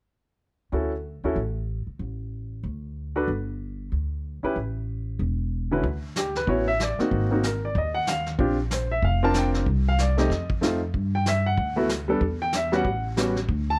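A light reverb gives this short jazz piano trio clip an intimate, up-front sound, with a clear, natural baby grand of short sustain carrying the melody and a woody, pizzicato upright bass beside it from 0.7 seconds. The mood is playful and warm, swinging at 188 BPM in 4/4 as the harmony moves from Dmaj7 through colourful turns like G#9, Bb69 and A13. At 5.8 seconds a vintage kit played with brushes joins underneath, its punchy kick and medium-tuned snare sitting mid-forward with a rolled-off top, before the passage breaks off as part of a longer piece.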